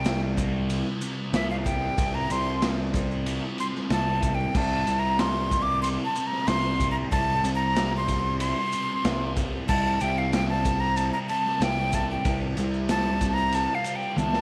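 Kaleidoscopic and trippy, this psychedelic rock excerpt at 93 BPM in C mixolydian features a breathy, bright jazz flute soloing up front with crisp chiff and slapback echo over a thick, double-tracked fuzz guitar riff with phaser, a punchy overdriven bass holding C2, grainy background maracas, and a raw garage drum kit with a punchy kick that closes on a fill at 14.2 seconds, all in a small room with light reverb.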